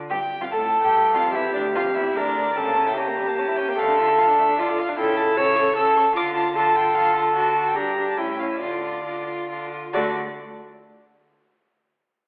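In a quick 3/4 that pushes and pulls freely between 133 and 154 BPM, this restless, urgent classical-period movement for string quartet in D minor has one bowed violin carrying the melody high above while a second violin plays an inner line, both with a rich, reedy gut-string tone and light vibrato. The viola enters at 0.5 s with nasal, airy bowing and sits close and up front as the accompaniment, over a cello bass line of the same period-style gut character. The quartet is heard from further back in a recital hall with a long, wet reverb and a thin telephone-like colour, and the passage is cut from a longer piece, ending on a bare D5 chord at 9.9 s.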